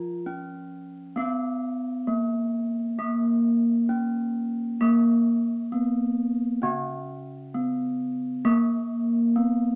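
Two bronze gamelan metallophones ring out together from the start in this shimmering, stately fragment of a longer piece, moving at a slow 66 BPM in a straight 4/4. The melody part, struck with a wooden mallet, sounds close, dry and full, while the accompanying metallophone, played with a horn mallet lower in range, carries a boxy small-room warmth. The same section is heard twice, the repeat beginning at 4.8 seconds, and both parts sit up front inside a short, wet studio reverb.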